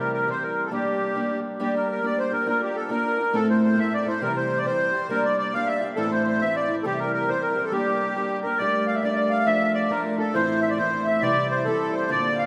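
Set in a wet church reverb, this spirited, dark Celtic polka in G dorian moves at 137 BPM with a swung 2/4 lilt, as a sweet, reedy accordion with light tremolo tuning carries the melody up front over a woody, fingerpicked old ladder-braced acoustic guitar with old strings, a second, boxier accordion joins in the background at 1.6 seconds, and a ringing, thumb-plucked Celtic harp enters at 8.4 seconds in this cut from a longer piece.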